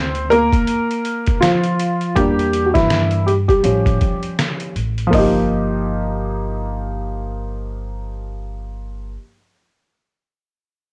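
A swung sixteenth-note groove in 4/4 sets a cool, nocturnal jazz-hop mood in this short cut from a longer hip hop piece. The trip hop sampler-style drum kit is compressed, pitched down, gritty and colored by cassette tape. It puts a thumpy kick, medium-tuned snare, hi-hat and toms up front with the sound of a large room, carrying the beat until 5.3 seconds. A worn, slightly detuned upright piano, also tinged by cassette tape, takes a solo over chords such as C9sus4 and Aaug7 until 5.1 seconds, then continues in its accompanying role as the harmony moves to Ebadd9/G. Beneath it, a dark, woody pizzicato upright bass with steel strings holds the low end throughout at a lower level. Light reverb and the character of a home cassette recording tie the sound together.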